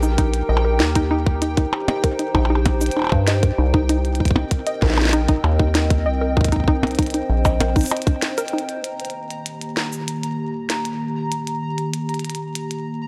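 A warbling, nostalgic tape-like pad, dusty detuned pluck arpeggios, a rubbery, resonant acid bass with tube saturation, a clicky glitchy drum kit with tiny snare, shaker and percussion blips, and a soft, pulsing gated texture open this wistful, intricate 97 BPM IDM excerpt in Eb major, joined at 0.2 s by a tight, up-front electronic kick, before a break at 8.2 s gives way to a filter sweep on the pad over the drums and bright texture, the whole recording carrying a dry, gritty hardware sound with light reverb.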